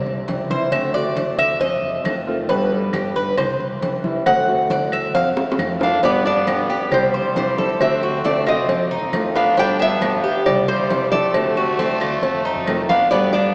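Drenched in a cathedral-sized reverb and heard as if through a small speaker, this relaxed, danceable Cuban son and guajira excerpt moves at 136 BPM in G major, its upright bass thumping dark and gut-strung beneath very quiet congas, tight high-tuned cowbell and bongos, saturated claves and a boxy, fingerpicked old ladder-braced acoustic guitar. The bright, metallic Cuban tres, with its doubled strings, takes a solo up front from the start, and a drum fill at 5.4 seconds leads into the second section. At 5.8 seconds a fingerpicked nylon-string guitar brings in the melody with audible finger squeak, while a raspy, growling trumpet plays a second line in the background.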